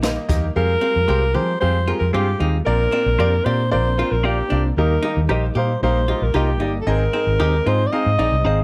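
Set in a small room, this joyful, uplifting soul clip opens with a grand piano fill before a breathy alto saxophone with light vibrato takes the melody at 0.6 s over a round, foam-muted bass up front, clear piano accompaniment with audible action noise, a dark hollow-body archtop guitar riff, phaser-tinged stabs from a direct-recorded clean electric guitar, and very quiet tonewheel organ chords turning through a slow rotary speaker.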